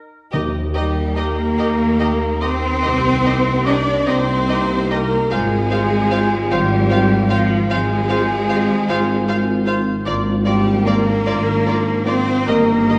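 Serene and warm, this slow romantic movement for symphony orchestra unfolds in a rubato 12/8 at 50 BPM in Eb major, cut from a longer piece. A lush violin section carries the melody with smooth vibrato, while a second, very quiet violin section, a hollow silver concert flute, a distant oboe and a soft, roomy clarinet weave second lines around it. Beneath them, a very quiet trombone section and a dark, distant French horn section hold sustained chords, and an expressive viola section adds accompaniment from 0.8 seconds. The focused cello section, a smooth double bass section and a mellow tuba in the background give the harmony its deep foundation, moving from Eb through Cm7 and Fm/Ab to Bb7/Ab before settling on Eb/G. Timpani struck with medium mallets mark only the opening, from 0.3 to 1.5 seconds. The whole ensemble is heard from further back in a scoring stage, bathed in a generous reverb with a 1.7-second tail.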